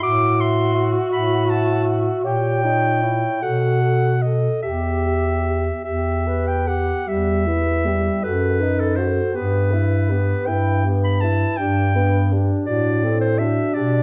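In a rubato 6/8, this serene, lyrical classical excerpt for single-reed quartet sets a bright, up-front clarinet melody over a mellow alto saxophone second line with vibrato, a soft-attacked, distant tenor saxophone accompaniment and a warm bass clarinet anchoring the bass, all four sounding together across the full 14 seconds in a reverberant recital hall with a dark production and vinyl crackle.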